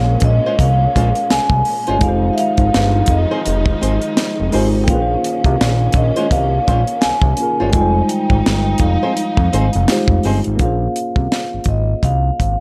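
A swung sixteenth-note groove at 84 BPM in 4/4 sets a sultry, introspective neo-soul and R&B mood, with a tight funk drum kit coming in at 0.2 seconds: dry acoustic hi-hat, a high-tuned snare and a tight kick sit up front. Beneath it, a fat analog bass blends detuned sawtooth and square waves with a fast attack, a moving notch and a thick, mellow sustain, and it is the loudest part of the mix. The melody belongs to a vibraphone played with soft mallets, its metallic ring shaded by a slow motor vibrato and a boxy small-room tone. A worn, slightly out-of-tune tine electric piano adds lightly overdriven accompaniment, and a fingerpicked flamenco guitar joins at 0.5 seconds as a second line, with audible finger squeak. A distant, lush bowed string section holds sustained chords with expressive vibrato and portamento until 10.6 seconds, where the harmony returns to Bbm9 after alternating between Bbm9 and Fm7. 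Studio reverb surrounds the arrangement in this fragment cut from a longer piece.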